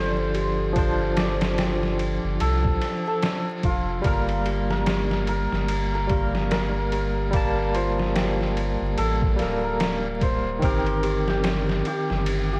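Trip hop at 73 BPM in G minor with a hypnotic, dark, swung feel, where a shimmering hammered santur carries the melody through tape echo over a barky, bright tine electric piano with tremolo. A delicate, bell-like celesta plays arpeggios with tape echo in the background, and a round, deep analog bass with transformer saturation sits up front beside a gritty, pitched-down sampler-style drum kit that enters at 0.3 s with thumpy kick, snare and ride. The whole is wrapped in worn cassette ambience with vinyl crackle and warbly pitch drift.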